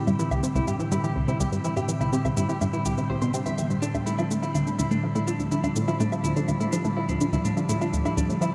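Ambient, sequencer-driven space music at 124 BPM in a straight 4/4, cosmic and mysterious, where a tight, driving sequenced synth riff with a sawtooth, wave-folded filter pluck and phaser sits beneath a detuned, resonant pad sustaining chords that move from C to Dmadd9 at 3.8 seconds, while a slightly broken-up electric guitar picks compressed, low-pass-filtered arpeggios through analog delay and an analog shaker and woodblock tick along, all bathed in a moderate shimmer reverb in this short cut from a longer piece.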